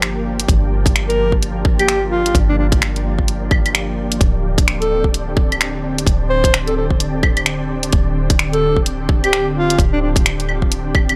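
A warm alto saxophone with vibrato sings a wistful, melancholic solo line from 1.1 s over an ethereal, warbling pad pumping under sidechain, a deep round 808-style bass, an overdriven garage kit of claves, finger snaps and hi-hat joined by a tight kick at 0.5 s, and a breathy wind-like texture in the background, all in a gritty, dry future garage excerpt at 129 BPM in G minor moving from Gm7 to D7sus4.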